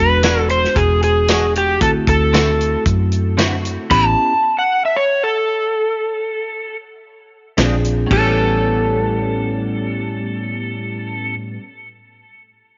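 A roomy, echo-chamber-soaked sound with a rolled-off top frames this swaggering, soulful straight-eighth soul blues excerpt at 114 BPM in A mixolydian, where an overdriven, up-front slide guitar carries the melody throughout over bell-like tine electric piano, a round, foam-muted vintage fingered bass, twangy, compressed clean guitar stabs with ensemble chorus and a punchy soul drum kit with dark cymbals and tambourine, until the band falls away between 3.5 and 4.3 s to leave the slide alone, then piano, bass, guitar and drums return at 7.6 s on a Bb9 chord, with the drums dropping out again after 8.2 s.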